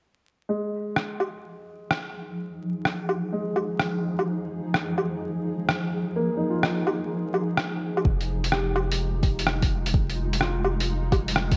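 Wistful and nocturnal, this future garage excerpt moves at 127 BPM in 4/4 with a swung sixteenth-note feel, sitting in F minor on a single Fm7 chord. A woody, slightly detuned upright piano opens the piece at 0.5 seconds as accompaniment, softened by a low-pass filter, tinted by delay and pulsing under sidechain pumping. A cloudy granular pad soon adds sustained chords with a slow attack and long release, its detuned, blurred tone carrying its own reverb and the same pumping motion. A muffled, pitched-down sampler-style kit of hi-hat, rim click and woodblock sits up front with a tape-like, compressed character. At 8.0 seconds a deep, layered electronic kick arrives, joined by a round, soft dub sub bass holding F1 as the second section begins. A moderate plate reverb, bright 1980s-style digital sheen and a bed of vinyl crackle frame the whole piece.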